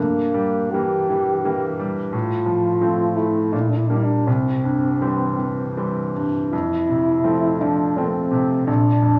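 This is a romantic classical duo for French horn and grand piano, tender in mood, moving at 83 BPM in 3/4 with uneven, rubato beats in F major and tuned to A4 = 438 Hz. The warm French horn carries the melody from Bb3 to G4 for the full 9.2 seconds, its tone smooth at the top and colored by vibrato, sitting up front in a solo, classical manner. Beneath it the grand piano supplies the accompaniment from Bb1 to C4, bright and brilliant yet intimate and present, with audible action noise. The brief harmonic path begins on Edim/G, settles on F/A at 2.1 seconds and C at 4.3 seconds, and closes its turn toward Bb at 8.7 seconds. A moderate recital hall reverb surrounds the pair, but the sound comes through worn, warbling old cassette tape with drifting pitch and a small room reverb, giving the fragment, cut from a longer piece, a warm, tender quality.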